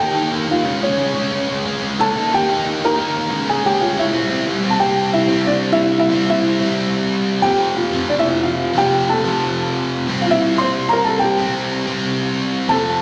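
A felt-muted upright piano and a biting, overdriven electric guitar start together at once in this short, upbeat and rebellious punk fragment, driving a straight 4/4 at 182 BPM. The piano carries the melody with a soft, mellow, boxy tone, its thin felt and audible action noise giving it an intimate, slightly muffled character, while slapback and tape echo trail each phrase. Up front, the double-tracked, picked guitar riff sits low beneath it, fattened by its own slapback echo. The harmony moves between Eb and Db before settling on C, and a new section arrives at 4.8 seconds, shifting through F and closing on a C5 chord. Everything sounds like a live gig heard through the venue's PA, with a light recital-hall reverb lending the room some air.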